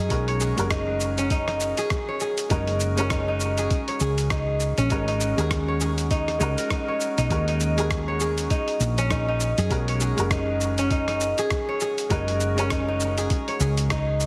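A 100 BPM groove in 4/4 with 58% swing on the sixteenths drives this earthy, mystical organic downtempo excerpt, cycling through Bmaj7, Gb, Ab7(no3) and Ebm7. A crisp, ringing fingerpicked kora spins arpeggios up front with delay beside a round, dark, hollow-body fretless bass carrying tube saturation, while a felt-muted upright piano adds mellow, intimate accompaniment with audible action noise, sidechain pumping and delay. At 0.1 seconds a gritty, tape-warm sampler-style kit of cabasa, hi-hat and rim click enters with a soft electronic kick re-recorded in a small room, both in studio reverb, and the mix sits in light digital ambience with a heavily compressed, radio-like sound.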